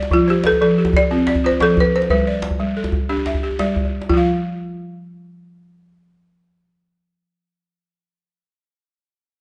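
West African traditional string and xylophone music with a joyful, warm mood at 121 BPM in a straight 12/8, cut from a longer piece, in which an up-front, dry, buzzing balafon played with rubber mallets plays mid-forward arpeggios while a second balafon, darker and smoother under hard rubber mallets, carries a woody melody over F and G chords, and a medium-tuned acoustic djembe with a small-room sound drops out at 4.3 seconds as the harmony falls away, the recording carrying light reverb and softly rolled-off highs.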